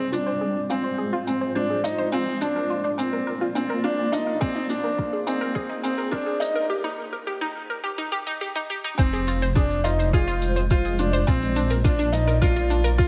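Piano and strings electronica in F dorian at 105 BPM, cinematic and intimate, where a bright, woody upright piano riff sits up front with digital delay over a cloudy, granular pad, a round analog pluck arpeggio with chorus, delay and a filter sweep through the build-up, and a small-room shaker, before a soft electronic kick enters at 4.4 seconds and a dark, rumbling detuned saw bass with tube saturation pumps into the drop at 9.0 seconds, all in a moderate concert hall reverb.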